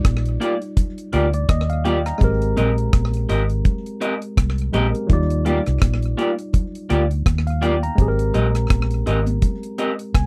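A dry, close 1970s-style studio sound frames this smooth, sweet lovers rock reggae excerpt, where a deep drum kit with a tight kick, hi-hat, rim click and slapback echo sits up front beside a dark, round, foam-muted fingered bass and twangy, slightly broken-up guitar stabs entering at 0.4 seconds, while a worn, slightly out-of-tune tine electric piano comps through Ebmaj9 and Abmaj9 chords and very quiet, high-tuned congas add a thin, band-limited layer.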